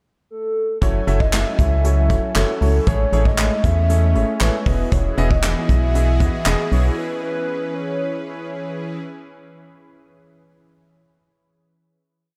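A dark, percussive organ-like FM bass with a fast, decaying attack drives this energetic dance-pop piece with a syncopated figure, sharing sidechain pumping with a polished baby grand piano playing drop-2 eighth-note chords and a smooth, detuned supersaw pad. A hollow, woody clarinet-like synth lead enters alone at 0.3 s and carries a confident, motif-based melody with vibrato, chorus and analog delay, while a roomy brush kit with a punchy kick and clap-layered snare plays a syncopated pop beat. The drums, bass and piano stop around 6.9 s; the lead carries on until 8.8 s and the pad sustains to the end at 9.0 s within light small-room reverb.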